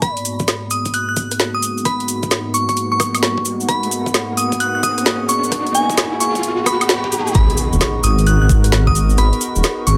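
A glassy, crystalline FM bell melody leads this skippy, bouncy two-step UK garage cut from a longer piece. It rings high over a smooth analog pad holding a G#m9 chord in G# minor, at 131 BPM with a swung 16th-note feel. Overdriven drums sit up front from the start: a knocking electronic kick, plus a kit of woody snare, rim click, woodblock and metallic hats, joined by a grainy, bright cabasa. During the build-up a filter sweep runs on the analog pad, while a softer, warbling tape-like pad with a nostalgic lo-fi character drifts in the background, both pads carrying sidechain pumping. A riser enters in the background at 1.8 seconds and leads to a drop at 7.3 seconds marked by an impact. At 7.4 seconds a deep, rumbling detuned saw bass arrives up front with tube saturation, its dark, beating tone anchoring the final stretch under light reverb.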